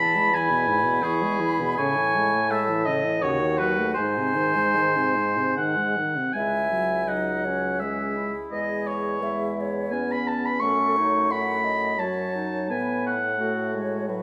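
A moderate recital-hall reverb surrounds this short cut from a longer slow, romantic movement for wind quintet in C# minor, played in 3/4 with a rubato feel at roughly 71-88 BPM. The mood is melancholic and yearning, and the harmony moves from E and Amaj7 through a half-diminished chord to G#, then settles into C# minor and F# minor colors in the second half from 6.4 seconds. An airy silver concert flute carries the melody with vibrato, tongued notes and lifted highs, while a warm oboe sits up front in the same upper register as a second line, its tone distant and roomy, falling silent at 13.7 seconds. Beneath them, a clear clarinet stays in the background with accompanying figures in its lower register, and a mellow French horn adds smooth-topped accompaniment with light vibrato. A bassoon anchors the bass with a mellow, lightly vibrated tone, all five parts sounding together from the opening moment.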